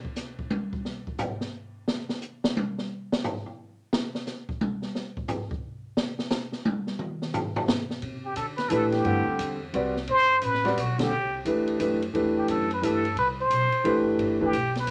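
An open jazz kit with dark cymbals, a high-tuned snare and a boomy kick solos alone for the first 8.0 seconds of this hypnotic, searching modal jazz fragment in C lydian, swinging in 3/4 at 176 BPM, before a woody, thumpy pizzicato upright bass, a plunger-muted trumpet soloing up front with wah-wah tone, scooped notes and light vibrato, and an intimate concert grand with deep bass, long sustain and audible action noise settle over a Cmaj9, with a band accent at 10.9 seconds and a short, wet studio reverb around them.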